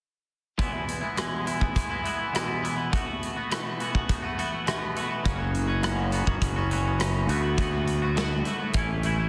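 A dense, heavily limited modern master with light reverb and lossy compression artefacts frames this short cut from a longer piece of quiet-loud alternative rock, bittersweet and cathartic in mood, in a straight 4/4. A bright, twangy electric guitar plays clean picked arpeggios from the start, its compressed tone coated in lush chorus and slapback echo. A big rock drum kit comes in alongside it, natural and up front in a big room, with a punchy kick, hi-hat, rim clicks and a medium-tuned snare that carries some soft clipping. At 5.3 seconds a fingered electric bass enters with a growly, overdriven fuzz, adding a punchy low weight under the guitar. The harmony moves from E through B7sus4 and F#sus4 to D6, landing on A just before the cut at 9.3 seconds.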